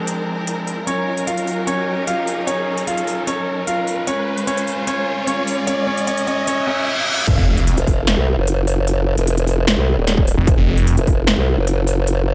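A snarling, growling saw bass bursts in around 7.4 s alongside a saturated formant-sweep wobble bass and a distorted electronic kick, dropping this menacing, aggressive heavy wobble dubstep excerpt in F phrygian at 150 BPM half-time onto an F5 chord, after a build-up of clear concert grand piano melody with digital delay, bowed studio strings with vibrato and sidechain pumping, a riser, reverse cymbal and sub drop, and a punchy big-room dance drum kit with crisp hats that carries on to the end in light digital ambience.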